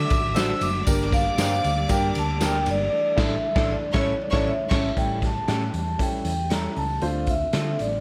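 A driving, passionate stretch of uptempo 1960s-style soul opens with a mellow, ringing vibraphone melody over a biting violin section on a second line, woody upright piano, very quiet tonewheel organ chords with key click, and a round, hollow-body electric bass. A gritty, saturated garage drum kit with a punchy kick sits up front, while a jingly tambourine plays in the background until 2.8 s and a twangy, lo-fi electric guitar adds stabs with subtle chorus. The band hits an accent from 2.9 s, the violins drop out at 4.9 s, and a light reverb frames the whole mix around the close-miked, dry vibraphone.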